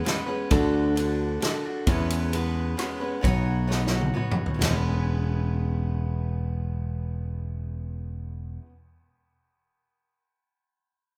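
A boxy, picked steel-string acoustic guitar opens this short excerpt of open-road, nostalgic folk rock and heartland rock in a straight 3/4, with a natural country drum kit joining almost at once and a round, picked electric bass following close behind. The chords move from D to E6 and then to Badd9 before settling back on E6. The drums sound acoustic and natural, with a punchy kick, a medium-tuned snare, rim clicks, ride cymbal and toms, and they roll through a fill from 3.7 seconds before dropping out at 4.7 seconds as the music moves into a new section. From there the guitar and the warm, direct-and-amped bass carry on together, all three instruments sitting up front in the mix. A moderate large-studio reverb gives the feel of a band playing live in one room.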